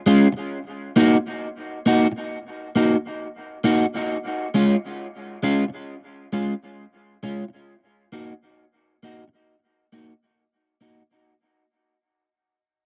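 Reggae at a laid-back 67 BPM with a light sixteenth-note swing, this hazy excerpt features a lone electric guitar at the edge of break-up playing accompaniment from 0.1 to 11.0 seconds, moving between Db and Ebm chords. The guitar sits up front, dark and slightly broken-up with a fingered touch, colored by subtle chorus and dub echo. The dry, close 1970s-style studio sound carries a moderate booth ambience, and the whole passage fades out as it is cut from a longer piece.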